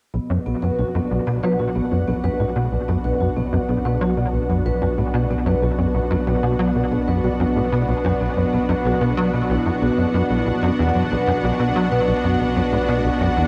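This cosmic, mysterious stretch of ambient, sequencer-driven space music opens at 0.1 seconds with all four parts sounding together over a sustained B minor chord, moving at 93 BPM in a straight 4/4. Up front, a tight sequencer bass drives a punchy riff built from sawtooth and square waves, its ring-modulated, filter-plucked notes striking fast and decaying, thickened by ensemble chorus and analog delay. Sharing the foreground, a lush unison pad holds thick, nasal, detuned sawtooth chords with a soft attack, long release and bright chorus shimmer. Further back, a vibraphone played with soft mallets spins mellow, metallic arpeggios whose ringing tones carry a fast motor vibrato and an analog delay, while a deep, round sine sub bass sustains a single low B underneath. The dreamy mix is soaked in plate reverb with a cassette-tape character, and this section, cut from a longer piece, runs until 13.5 seconds.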